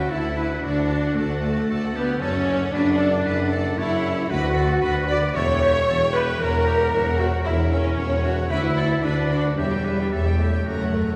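Classical orchestral excerpt at 114 BPM in 4/4, stormy and dramatic, moving from D major into B minor at 4.3 s as a lush violin section carries the melody in the background over a clear, punchy oboe, an airy hollow flute and a second, expressive violin section on supporting lines, with smooth, even violas filling the accompaniment, a mellow French horn section holding very quiet chords, cellos, double basses and a roomy tuba anchoring the low end, and soft-mallet timpani adding a round fill at 10.7 s, all heard from further back in a reverberant concert hall.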